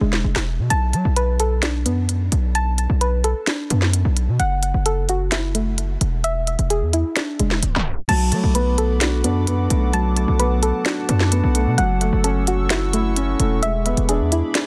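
This brooding, dark trap cut in B dorian opens on a soft, round pluck playing arpeggios through chorus and delay, with a punchy, heavy 808-style bass up front and a brief break in the first 0.7 seconds. A crisp, sharp electronic trap kit of hi-hats, snare, rim clicks, handclaps and crash cymbal drives a half-time feel at 130 BPM, while the chords cycle through Bm7, F#m7 and E7. At 7.6 seconds a tape stop drags the sound down before the second section begins at 8.1 seconds. There a felt-muted upright piano enters with intimate, mellow accompaniment, joined moments later by a deep, moody analog pad holding sustained chords low in the mix, colored by chorus and phaser. The mix is dense, dry and heavily limited, and this is cut from a longer piece.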